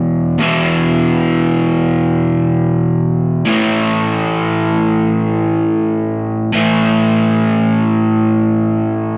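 Played in free time, this short rock fragment from a longer piece has a raunchy, driving mood. A single electric guitar carries it as a solo, overdriven to a crunchy, warm edge and picked, sitting up front in the mix. The part is double-tracked, which gives it a thicker body, and it moves through a low register from E2 up to A3. The chords are an E5 power chord at the start and a shift to A5 at 3.5 seconds, which carries through to the end of the fragment at 9.2 seconds. A moderate echo-chamber reverb with a 1.6-second tail wraps the sound in a roomy halo, and the instrument is tuned a hair above standard pitch, with A4 at 441 Hz.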